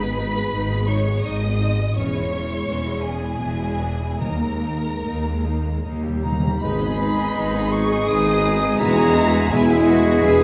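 Classical slow romantic movement for symphony orchestra in 3/4, solemn and yearning, moving with rubato as a lush, vibrato-rich violin section carries the melody over a warm second violin line, smooth violas, clear cellos and focused double basses, all heard from further back in a reverberant recital hall. A very quiet timpani with soft mallets enters at 4.2 s and plays a fill before 6.6 s, and a hollow, airy flute joins at 6.2 s. At 6.6 s the second section brings in a bright clarinet, a warm bassoon, dark trombones, mellow French horns, a clear trumpet playing stabs and a mellow tuba underpinning the bass, before this cut from a longer piece ends.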